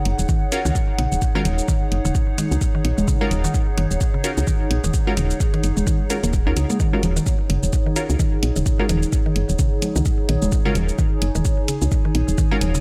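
A warbling, lo-fi pad opens this clinical, sparse minimal techno excerpt, its detuned, mellow tone softened by chorus, phaser and its own reverb while sidechain pumping makes it breathe in time with the beat. A woody, round FM bass arrives almost at once, dark and up front with tube saturation, alongside a layered electronic hi-hat and shaker. At 0.3 seconds a deep, produced kick drum takes hold with a small-room ambience, joined by a mallet-like synth pluck that sits in the background, percussive with a noise layer and moving notch, carried by chorus and delay. Crisp, bright wavetable chord stabs with a detuned filter pluck and tape echo enter shortly after, voicing a single Ebm7 harmony over a swung groove. From 1.4 seconds, analog-sounding electronic toms and congas drift in from a large room in the background, trailing their own tape echo.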